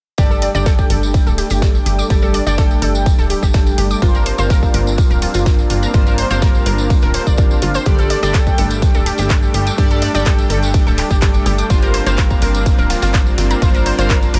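Bathed in digital ambience, this dreamy, expansive progressive house excerpt rides an overdriven, punchy electronic kick up front. Beneath it sit a funky plucky analog bass and the handclaps and hi-hat of a deep house drum kit. A jingly acoustic tambourine joins in, while a very quiet, gritty breakbeat sampler-style drum kit adds hi-hat, ride and snare. A bright unison pluck spins arpeggios through dub echo, and a retro, glossy chorused polysynth fires tape-tinged stabs. A lush supersaw pad sustains Gsus2 and Bbadd9 chords in the background under a filter sweep, with the pad, pluck, stabs and bass all pumping against the sidechain.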